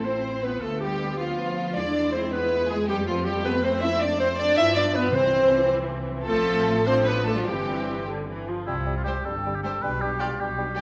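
A quick, spirited classical-period movement for symphony orchestra opens at once with a full texture: a rich, focused violin section carrying the melody over a second violin line, a present clarinet weaving its own counterline, and a lush, distant viola section filling out the accompaniment. Beneath them, a tight French horn section holds very quiet sustained chords with a soft attack, while a clear cello section and a smooth, even double bass section anchor the bass, both bowed with vibrato. The music moves in a graceful 6/8 at 105 BPM, pulled gently with rubato, passing from A minor through diminished and seventh chords before settling into C major from 4.0 s. A hard-mallet timpani entry on calf heads, close and dry, marks the arrival of C at 5.1 s. At 8.7 s a new section brings in an up-front oboe, a mellow bassoon, and a pure, crisp-attacked flute sitting distant in the background on a high G, as the passage is cut from the longer piece. 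A wet scoring-stage reverb gives the ensemble a spacious, resonant bloom.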